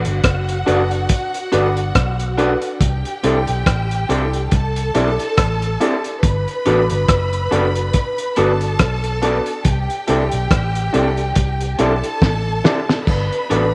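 Smooth and romantic, this lovers rock reggae excerpt sways at 70 BPM in G major with a gentle swing on the sixteenths, drifting between Gmaj7 and C69 chords. A cloth-damped drum kit sits up front with a thuddy, muffled tone, a fat snare, tight kick, rim clicks, hi-hat and dark splash cymbal, its gritty saturation and rolled-off top giving it a lo-fi, small-room feel, and a drum fill arrives at 12.2 seconds. Beneath it, a vintage muted fingered electric bass holds the low end with a round, dark, foam-muted sound, also placed up front. From 0.7 seconds a baby grand piano adds accompaniment in the background, natural and short in sustain with a slapback echo, while an electric guitar through a small old amp plays picked stabs that are slightly broken-up. A distant, lush string section carries a second line with expressive vibrato and portamento, bathed along with the band in a moderate spring reverb.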